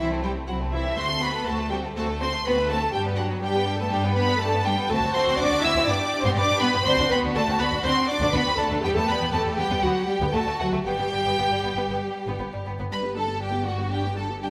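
In a rubato 4/4 at 121 BPM, this quick, graceful and cheerful classical-period movement for string orchestra in G major moves from Am/C through D7 and G, reaches Em, passes through a brief chordless moment, then closes from D to G. A smooth, up-front violin section carries the melody high above a second violin line coloured by expressive portamento, while lush violas supply the accompaniment and a focused cello section joins a warm double bass section on the bass, every part bowed with vibrato. A moderate scoring-stage reverb with a 1.7-second decay gives this short cut from a longer piece a polished studio sheen.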